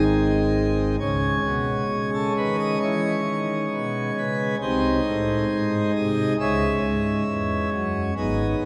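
Solemn and grave, this short excerpt cut from a longer classical piece is a chorale-style passage for solo pipe organ in C# minor, moving at a measured 67 BPM in a straight 4/4. The organ plays alone throughout, drawn on a full plenum with mixtures that gives a brilliant, romantically voiced sound, placed up front and spanning from a low G#1 up to E5. It opens on a G# chord before settling onto C# minor at 1.0 seconds, then moves through G#/B# and returns to C# minor at 6.4 seconds. The instrument sits in a church or concert hall with a heavy, lingering reverb of about 3.5 seconds, so each chord hangs in the air and blooms into the space. The result feels solemn and grave, a dense wall of organ tone framed by the resonance of a large room.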